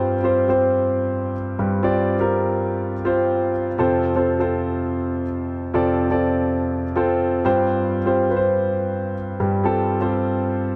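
A concert grand piano carries this short pop passage entirely on its own, sitting up front with a clear, intimate tone, deep bass and long sustain. The sound of its action is audible, giving the polished playing a close, present quality. The harmony moves from Csus4/G to F at 3.8 seconds, then returns to Csus4/G at 7.4 seconds, with the piano spanning F2 to D5. A moderate plate reverb adds a tail around the notes within a dark production. The mood is warm and hopeful, and the roughly 10.8-second passage is cut from a longer piece in straight 4/4.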